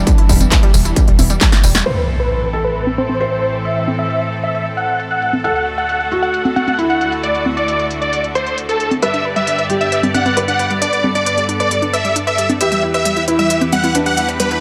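Bittersweet and euphoric, this uplifting trance passage is cut from a longer piece and rides a straight pulse over a progression that moves from E minor through A minor, D and G before circling back. Bright, biting symphonic strings hold sustained chords throughout from a distant vantage, pumping under sidechain, while a soft felt-muted upright piano with audible action noise adds a mellow second line roughened by vintage 12-bit sampler grit and dub echo. At the opening a tight, driving sawtooth sequencer bass and a distorted, up-front electronic kick push hard, a lush, warbling unison pluck spins taped, delayed arpeggios, and a drum fill leads into the next section. At 1.9 seconds a huge, airy supersaw lead takes the melody with delay and a filter sweep, arriving alongside an electronic impact, as the bass, kick and pluck fall away. The big-room dance kit carries on with a punchy snare, crisp hats, congas, handclaps and tambourine, all filtered and swept, and the pluck returns at 9.0 seconds beneath the lead in a light reverb.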